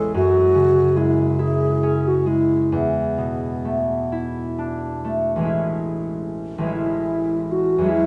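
Dreamy and luminous, this brief excerpt from a longer piece is an impressionist classical duo for alto flute and concert harp, set in 6/8 with a free, rubato feel. The alto flute carries the melody from B3 to A4 with an airy, hollow, straight tone and crisp attacks; it sits up front, yet it also has a faintly distant quality. Beneath it, the concert harp supplies a fingerpicked accompaniment that rings bright and acoustic, spanning A1 to E4. The harmony drifts from F#sus2 to E7sus4, and at 5.5 seconds a new section opens on an Amaj7 chord. Both instruments play throughout, bathed in the wet reverb of a scoring stage.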